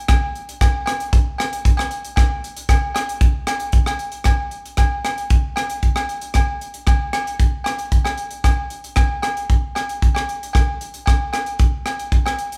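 Carefree and joyful, this highlife excerpt moves at 115 BPM in a straight 4/4, pairing a dry, airy funk drum kit, up front with polished hi-hat, rim clicks and a tight kick, with ringing, saturated agogo bells, all captured as a band playing live in one room with light reverb, the music shifting into a new section at 4.2 seconds.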